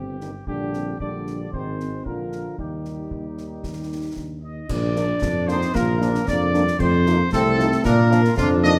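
A moderate scoring-stage reverb gives this proud, rousing excerpt of a military-style wind band march in 2/4 at 114 BPM a roomy sheen. Distant, dark trumpets carry the Eb major melody over a soft-edged euphonium second line, an up-front, mellow tuba bass and a French horn section accompaniment with light vibrato, while close, dry concert snare, bass drum and clash cymbals keep the march going. At 4.7 s the music moves to Bb major, and at 5.2 s a tight trombone section enters in the background with warm sustained chords.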